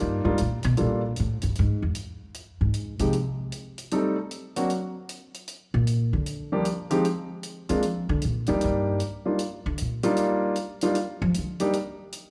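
A woody, pizzicato upright bass solo opens this swinging, sophisticated jazz piano trio excerpt in Eb major at 153 BPM, joined from the start by an intimate, smooth concert grand piano carrying the melody, its action noise audible, over chords moving from Ebmaj9 through Gm9 and Am7b5 back to Ebmaj9, while a dry, natural hi-hat enters at 0.4 seconds, all set in the moderate reverb of a church or concert hall.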